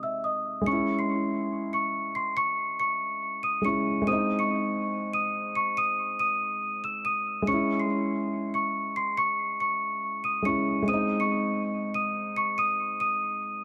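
The beat sits in a half-time 4/4 feel, giving this hip hop fragment a slow, heavy sway beneath its tense, menacing mood. A large celesta carries the melody high in its register, its bell-like, delicate tone ringing full and sitting up front. Beneath it, a dark concert grand piano plays the accompaniment in a low range, mellow and intimate, with deep bass, a short sustain, a vintage character and audible action noise. Both instruments run through tape echo and play together from 0.0 to 13.6 seconds. A moderate spring reverb and an echo-heavy mix wrap the pair in a haunted, smeared space, and the recording is cut from a longer piece.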